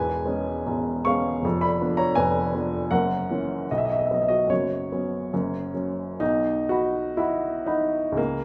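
Stormy and brooding, this romantic character piece for solo piano moves in 2/4 with a free, rubato pulse between 59 and 83 BPM in B major. A dark upright piano, mellow and woody in tone and placed up front, spans E1 to C#6 as the harmony passes through C#m7/E, Fdim7 and F#7, then leans on F#sus4 and F# before arriving on B at 6.2 seconds, where a new section begins. Moderate recital hall reverb surrounds this brief fragment cut from a longer piece.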